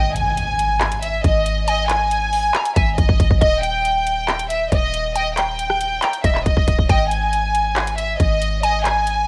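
A half-time 4/4 trap groove at 138 BPM underpins this brooding, melancholic hip hop excerpt, where a close, intimate violin section carries the melody with light vibrato and sul tasto bowing through cassette tape and tape echo, a hollow, detuned square-wave pluck with chorus and cassette tape traces a second line, a deep, boomy 808-style sine bass sits up front, an electronic impact sounds in the background until 1.7 seconds, and a hard-clipped kick, metallic hi-hats, handclaps and rim clicks from the cassette-tape-treated drum kit sit forward in a digital ambience with the character of a home cassette recording.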